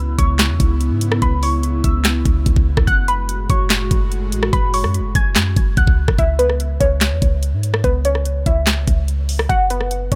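A warbling, lo-fi detuned pluck with chorus and digital delay carries the melody over a breathy, mellow pad and a deep, boomy 808-style bass in this dark, menacing half-time trap excerpt in C# minor at 145 BPM. An up-front electronic kit of knocking kick, sharp snare, rim clicks, handclaps and bright hi-hats joins at 0.2 seconds, and the pad drops out at 6.2 seconds as the C#m7 to F#madd9 progression returns to C#m7, before the harmony falls away at 9.5 seconds.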